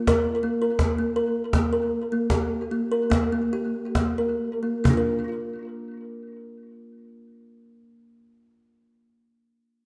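A straight 4/4 pulse gradually slows through the opening 4.8 seconds, giving this brief fragment of meditative world music a gentle, calm drift. A kalimba plays arpeggios across the whole passage, its thumbnail plucks bright, short and hollow, set up front and trailed by tape echo. A cajon supplies acoustic percussion with a woody tone and faint snares, carrying the sound of a large room before it stops at 5.3 seconds and leaves the kalimba alone. The harmony moves from Bb5 to Gm/Bb and settles back on Bb as the music shifts into a second section. Moderate scoring stage reverb and small room ambience surround the dark, warm production.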